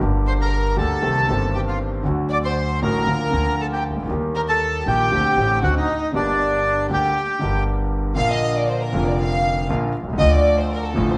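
Played in a loose, rubato four-beat tango pulse, this dramatic, passionate fragment from a longer piece opens with a clear concert grand piano and a pizzicato upright bass laying down the accompaniment. The piano sits up front with deep bass, long sustain and audible action noise, while the bass adds a woody, thumpy low end. At 0.3 s the reedy, mid-forward bandoneon takes the melody, with a bowed violin section playing a second line close beneath it, intimate and sul tasto with light vibrato. The bandoneon falls away at 7.6 s, and from 8.2 s the violin section comes to the fore over the piano and bass as the harmony moves to a new section. A moderate recital hall reverb gives the sound a sense of space, and the top end is gently softened.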